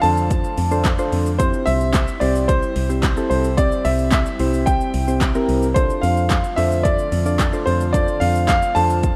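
A clear, intimate grand piano leads this euphoric, carefree dance-pop excerpt, its up-front melody sitting between C5 and A5 with long sustain, audible action noise and a tape echo trailing its notes. Beneath it, soft, round electric-piano-like synth keys play chorused accompaniment that pumps with the sidechain, while an airy, breathy pad holds very quiet, mellow sustained chords. An organ-like FM bass, hollow and dark with a fast attack, also pumps in the low register. The overdriven deep house drum kit sits up front with a deep kick, punchy snare, metallic hats, handclaps and shaker at a straight 110 BPM in 4/4, and a distant group handclap is barely audible from 0.9 to 8.6 seconds. In F major, the harmony moves from F6 to C and back to F6, all within a rough home-demo mix touched by light reverb.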